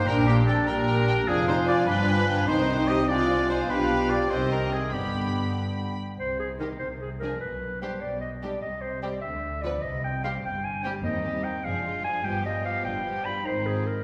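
Set in a wet scoring-stage reverb, this stormy, dramatic excerpt from a quick classical-period movement in C minor, at 99 BPM in 6/8, carries its melody on a warm, sul tasto violin section over a woody double bass section and smooth-topped cellos, with a rich second violin section, a clear, roomy clarinet, a distant oboe, an airy flute group, background violas, bassoon and mellow French horn chords filling the texture, and a barely audible timpani stroke at 2.5 seconds.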